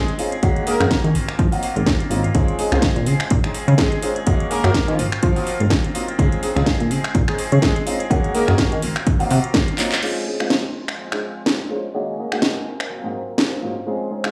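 Funky and feel-good, this excerpt of filtered disco house moves at 125 BPM in 4/4 with a light 16th-note swing, sitting in Db major and cycling through lush chords such as Gb69, Ab13 and Dbmaj7. A bright, punchy horn section carries the melody in loose octave doubling, coloured by tape echo, while a clean, twangy picked electric guitar plays a riff and a brilliant grand piano with long sustain and phaser fills out the accompaniment. Underneath, a plucky analog bass with a fast attack and ring-modulated edge sits up front beside an overdriven, punchy electronic kick, and a house kit adds a cracking snare, metallic hats, finger snaps, handclaps and crash cymbal. Sidechain pumping and low-pass filtering shape most of the melodic parts, and the kit's hats and cymbals pump as well. The horns drop out at 8.7 seconds, and after a drum fill and band accent, a filter sweep runs from 10.0 seconds as a clear chamber violin section enters in the background with sustained chords and light vibrato. 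The sound is dry and gritty, with transformer saturation, light reverb and studio ambience.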